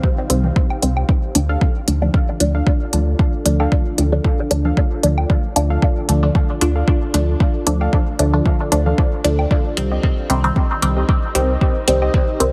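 A deep, up-front electronic kick and smooth hi-hats set a lightly swung 4/4 groove at 114 BPM, joined at 0.3 s by a round sine sub bass, while overdriven analog congas and woodblock sit in the background with dub echo. In this hazy, meditative dub techno excerpt in D phrygian, a muted, nasal sawtooth chord stab with phaser, dub echo and sidechain pumping moves over Cm and Dm harmony, and a second detuned stab riff enters at 1.5 s, colored by chorus and a cassette tape tint. A dark, slow-attack ambient pad sustains behind them with chorus and its own reverb, and the mix overall is dry and heavily compressed, with a radio-like sound.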